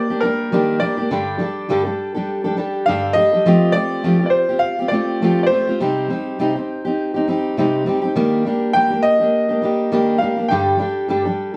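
Wistful and tender, this short pop passage in G minor moves at 102 BPM in 4/4 with a gentle sixteenth-note swing. A bright upright piano carries the melody up front, its brilliant, woody tone set in plate reverb as it sings between Bb4 and G5 before dropping out at 11.0 seconds. Beneath it, a fingerpicked steel-string dreadnought guitar supplies the accompaniment from G2 to A4, full-bodied and close, sounding slightly stronger than the piano. The harmony drifts through Ebmaj7, Gsus2, Fadd9 and Cm before returning to Ebmaj7 and Gsus2, giving the phrase an open, unresolved ache. A small room ambience and moderate studio reverb frame the pair naturally, and the guitar rings on alone until the cut at 11.6 seconds.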